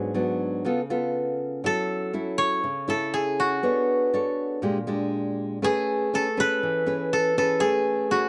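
A dry, close recording in a 1970s studio style captures this short bossa nova excerpt, sophisticated and romantic in mood. Up front, a woody koto played with fingerpicks carries the melody, while a bright, fingerpicked classical nylon-string guitar with fresh strings and audible finger squeaks supplies the accompaniment. The chords move from G#m7b5 and C#7b13 through F#m7, Bm9 and Bb6, settling on Amaj9 at 5.6 seconds.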